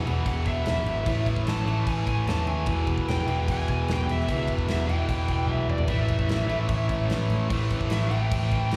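An overdriven slide guitar carries a bright, fingered solo through this gritty, driving blues rock and southern rock excerpt from a live gig heard through the venue's PA, backed by a double-tracked, up-front picked guitar riff with slapback echo, a dark, round, foam-muted bass, a big-room drum kit with a punchy kick and a fill at 5.5 seconds, and a very quiet, key-clicking tonewheel organ on slow rotary speaker holding sustained chords as the harmony moves from E to A and closes on Am7 in light recital-hall reverb.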